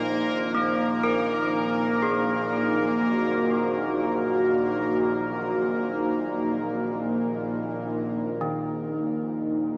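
Ominous and cavernous, this dark ambient drone at 61 BPM, cut from a longer piece, sets a deep, moody pad of sustained chords up front over a tense, string-like bowed drone, while a bubbling, resonant stepped-filter texture sparkles until 8.0 s and a ringing bronze gamelan-type metallophone enters at 0.5 s with arpeggios trailing into diffuse delay, all bathed in a huge, wet reverb with a small-speaker sound and faint mains hum as the harmony shifts from Ab/Bb to Bb9sus4 at 7.9 s.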